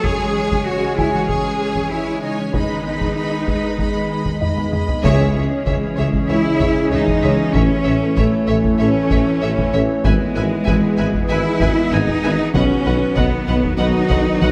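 Set in a recital-hall reverb, this brooding, relentless cut from a longer hybrid orchestral and electronic film score moves at 96 BPM in C# minor. Close, dry taiko and an up-front, focused cello section drive beneath a hollow, warbling pad, a faint harp-like synth pluck playing arpeggios, a dark baby grand piano that drops out at 10.1 s, a violin section on a second line and a background viola section with portamento. After a taiko fill, a band accent at 5.0 s brings in a lush, distant violin melody, roomy French horns, tight, very quiet trombones, a punchy tuba and a smooth double bass section.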